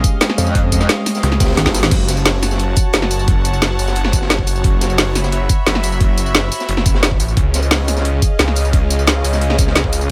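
Aggressive and tense, this clip from a longer dark technical drum and bass track opens straight into a drop in a driving 4/4. A snarling, growling saw bass sits up front with tube-saturated distortion, while a metallic, wobbling FM bass with chorus joins it from 0.4 to 1.9 seconds. The drums stack a knocking, overdriven electronic kick with an up-front electronic kit of woody snare, bright hats, crash and tambourine, all overdriven, and a crunchy acoustic breakbeat kit that stays in the background, dark and gritty with a rolled-off top and high-tuned snare. A very quiet, moody ambient pad holds sustained chords only until 1.9 seconds, where a drum fill and a band accent lead into the second drop. Throughout, an earthy chamber string section with light vibrato pumps against the sidechain, its bowed ensemble tone adding a rich layer above the low end, all set in a light reverb.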